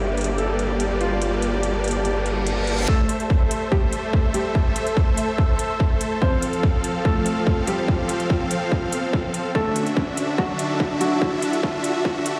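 This heavy, menacing slice of wobble dubstep, cut from a longer piece and set in a half-time feel, opens on huge, detuned supersaw chords pumping against the sidechain. An airy, breathy pad drifts in the background, and a growling, saturated wobble bass sits up front until 2.9 seconds. A felt-muted upright piano carries the melody almost at once, its soft, intimate tone marked by audible action noise and a tape echo. Metallic electronic hi-hats, darkened by a low-pass filter, sit beneath, and a very quiet reverse cymbal and riser arrives at 2.2 seconds. At 2.9 seconds a distorted, layered electronic kick punches in up front as the build-up begins, the harmony moving from Am through F to Dadd9, and a drum fill carries the passage from 9.6 seconds to its end. A lush hall reverb and the ring of a large, bare room surround the mix.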